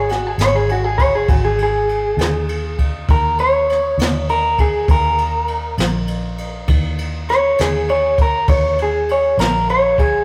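A slow 12/8 blues at 67 BPM rolls along on a jazz brush kit, its boomy kick, medium-tuned snare and dark ride cymbal sitting up front in a small, rough rehearsal-room space, while a round, foam-muted electric bass holds down the low end. Over them, in Eb minor, an electric guitar through a small old amp takes a clean, picked solo throughout this cut from a longer piece, its slightly broken-up, lo-fi tone bathed in spring reverb. The chords move from Ab5 to Eb5 at 3.1 seconds, giving the mournful, soulful line room to breathe.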